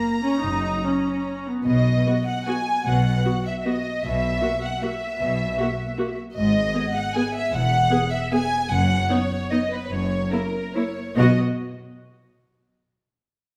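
Up front and rich, the viola section carries the accompaniment in this sweeping, elegant classical string passage in B major, a rubato 3/4 at around 135-166 BPM cut from a longer piece. Above it, a close, intimate chamber violin section sings the melody with light vibrato and a soft sul tasto touch, joined by a lush, distant symphonic violin section on a second line, while smooth cellos and expressive double basses enter at 0.4 s to anchor the bass. The music slows from 8.1 s as the harmony moves through G#m, E and F#7 before arriving on B at 11.2 s, in the wet reverb of a recital hall.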